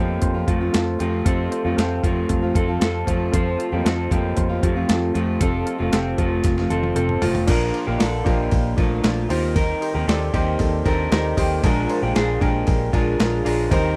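Jangly indie pop at 116 BPM in Bb major, breezy and nostalgic, cut from a longer piece and captured as a dry, close 1970s-style studio recording. A gritty, overdriven sampler-style drum kit with a thumpy kick sits up front beside a dark, slightly broken-up electric guitar playing lo-fi arpeggios through a small old amp with spring reverb, while a punchy, foam-muted fingered electric bass holds the low end, a full-bodied fingerpicked steel-string acoustic guitar fills out the background, and soft, mellow electric-piano-like synth keys shimmer with chorus. The drums and synth keys share a fill from 6.4 to 7.5 seconds, leading into a new section where the harmony moves from F to Bb.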